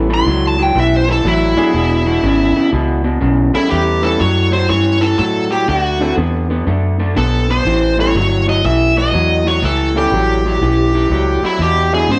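A smooth, bright overdriven lead guitar sits up front and carries the melody through this laid-back, swaggering electric blues shuffle, taking a solo over the opening 3.7 seconds. Beneath it, a rhythm guitar pushed through a small old amp plays a dark, slightly broken-up, lo-fi riff with a compressed, fingered tone. A vintage muted bass, round and punchy with a foam-damped, amped sound, anchors the low end, while a clear, woody upright piano adds polished accompaniment with long sustain from the background. The groove swings at 122 BPM in 4/4, moving in A mixolydian over A9, E9 and Dadd9 chords. The band plays live together in a stone room whose moderate reverb gives the sound a natural sense of space, and the recording is cut from a longer piece.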